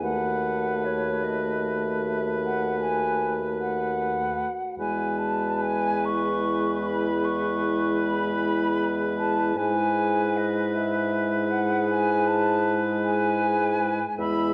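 An airy, expressive flute with vibrato carries the melody over a clear oboe second line, a soft-attacked French horn, a dark clarinet in the background, and a mellow, up-front bassoon bass in this serene, tender excerpt from a slow, rubato romantic movement for wind quintet in E major at 51 BPM in 12/8, moving from B7/D# to E at 4.8 seconds and E/G# at 9.6 seconds within a reverberant recital hall and a dark production.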